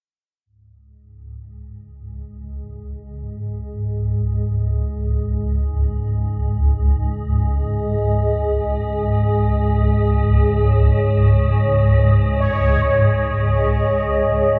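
This dark ambient drone opens with an ominous, cavernous feel as a swarming drone fades in at 1.4 seconds, low in register and placed up front. Its detuned sine tone warbles with a vintage, granular character, and a moving notch keeps the unison mass tense and slowly evolving as it sustains through long, gradual attacks and releases. At 10.7 seconds a quieter bubbling texture appears high above, built from a resonant sawtooth sound whose filter jumps in random steps, thickened by chorus and its own reverb. Both parts carry on together until the recording breaks off at 14.6 seconds, cut from a longer piece. A lush hall reverb, moderate in size with a 2.8-second decay, soaks the dreamy mix and deepens its cave-like sense of space.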